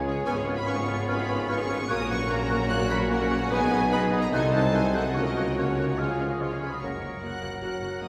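A clear, intense violin section carries the melody from 0.3 seconds, its lush bowed vibrato sounding distant in a wet cathedral reverb, in this restless, dramatic orchestral excerpt in F# major at 147 BPM in a straight 4/4. Beneath it, a warm French horn section holds sustained chords until 7.8 seconds, while a tight trumpet section adds stabs in the background from 0.3 seconds. A second violin line, an airy silver flute, a mellow clarinet and a warm, roomy oboe weave supporting lines, with a vintage-toned bassoon and a smooth, very quiet viola section filling the accompaniment. The low end rests on a dark, woody cello section, a double bass section and a very quiet tuba, while a ringing, fingerpicked concert harp plays arpeggios at a hush. The harmony moves through C#7/G#, G#m/B and Cdim7 before resolving from C# to F# at 6.8 seconds as a new section begins.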